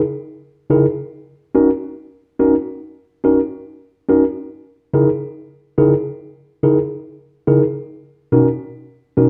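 A bittersweet, longing reggae fragment at 71 BPM in C# dorian with a lightly swung sixteenth feel, where a mellow, clean tine electric piano enters at 0.7 s and takes the solo, up front and direct, moving through C#m69, D#m7 and Bmaj7 in a large studio room with moderate reverb, tuned to A4 = 444 Hz.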